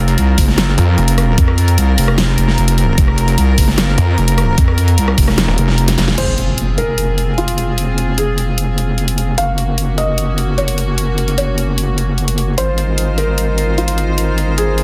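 Aggressive and heavy, this half-time wobble dubstep excerpt at 150 BPM in F phrygian opens on a drop where a saturated, chorused wobble bass sits up front over a knocking, overdriven electronic kick and a drum kit with a huge snare and bright hats, while a growling, detuned sawtooth bass snarls in briefly and floating bowed strings pump softly beneath, until a drum fill and band accent lead at 6.2 s into a background impact and a muted, intimate felt-muted upright piano melody with digital delay and audible action noise, all in a dense, dry, heavily limited master.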